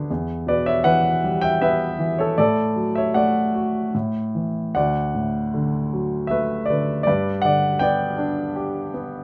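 Peaceful and calm, this brief classical passage for solo baby grand piano unfolds in D major at 79 BPM in 3/4, with a rubato feel. The piano sounds present and polished, sitting up front in light reverb, and plays across a range from D2 to G5 for the full 9.2 seconds. The harmony moves from E minor through D over A and onward to G, and the recording is cut from a longer piece.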